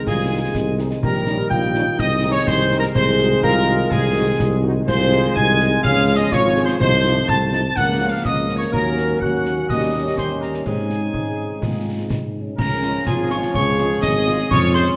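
A proud, spirited military-style march for wind band in a straight 2/4, cut from a longer piece, opens with a dark, distant trumpet section carrying the melody over an up-front mellow tuba bass, a bright wooden piccolo, a mellow woodwind section, a roomy euphonium, clear trombone chords, background French horns and close, dry snare, bass drum and clash cymbals, all in a wet recital hall, until a metallic, bell-like glockenspiel joins at 12.6 seconds as the euphonium drops out.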